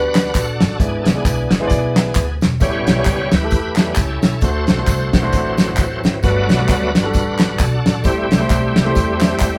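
Reverent and soulful, this short uptempo gospel excerpt moves at 132 BPM in 4/4 with a swung eighth-note feel, set in G major and cut from a longer piece. A bright, shouting tonewheel organ carries a solo throughout, its sustained chords lightly overdriven and colored by chorus vibrato and a slow rotary speaker. Beneath it, a grand piano with a natural tone plays accompaniment, while a woody, thumpy pizzicato upright bass anchors the low end. The soul drum kit sits up front with a fat snare, tight kick, hi-hat and a rolled-off top, joined by group handclaps, tambourine and egg shaker from a small room. The harmony moves from Gmaj7 through E7/G#, A7 and D7 before returning to Gmaj7 and landing on Am7, all captured as a band playing live in one room with moderate studio reverb.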